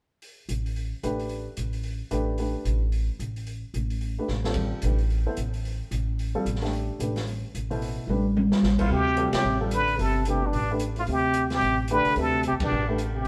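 This excerpt sounds like a band playing live together in a stone room, with a moderate reverb giving the cool, spiritual modal jazz a natural depth. It swings at a brisk pace, opening on drums at 0.2 seconds with dark cymbals, a medium-tuned snare and a boomy kick, joined almost at once by a woody pizzicato upright bass sitting up front. A baby grand piano comes in at 1.0 second for intimate accompaniment, its short sustain and audible action noise adding a close, natural texture over a suspended chord. The drums play a fill at 4.3 seconds and another just before the second section. At 8.8 seconds a plunger-muted trumpet takes the melody, brilliant and forceful with wah-wah inflections, vibrato and scooped notes, while a breathy, whispered trombone carries a mellow second line beneath it, and the band punches out accents along the way.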